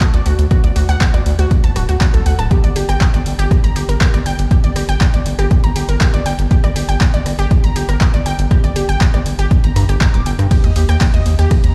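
A straight 4/4 groove at 120 BPM drives this dark, hypnotic melodic techno excerpt, anchored by an overdriven, layered electronic kick up front and a tape-toned analog drum machine adding handclaps, hi-hat, ride cymbal and rim click. A round, deep square-and-sine bass pumps with sidechain from 0.1 s, while a lush, detuned sawtooth unison pluck plays bright, delayed arpeggios between F#4 and D6. The harmony opens on D, leaves chords behind at 2.5 s and lands on Eb at 10.5 s, the mix tuned to A4 = 442 Hz and washed in large studio reverb as if played on a big sound system in a bare room.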